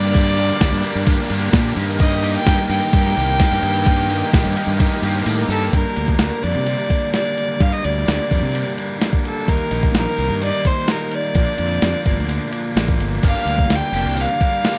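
Bittersweet and moody, this indie rock excerpt moves at 128 BPM in G minor, with a clear, earthy fiddle carrying the melody up front with light vibrato throughout. Beneath it, a compressed, overdriven electric guitar plays a riff with spring reverb, while a bright, crunchy second guitar sits in the background with ensemble chorus, dropping out at 5.7 seconds and returning at 13.2 seconds. A round, dark fingered bass with fuzz and overdrive anchors the low end, and a crisp 8-bit drum machine, re-recorded in a small room and overdriven, pushes a thumpy kick, medium-tuned snare, hi-hat and ride cymbal to the front. A very quiet, jingly tambourine adds a warm jingle early on, and the kick and snare briefly drop out just before the second section begins. The chords move from Gm to Eb, later passing through Bb before settling on Gm7, all set in a digital ambience.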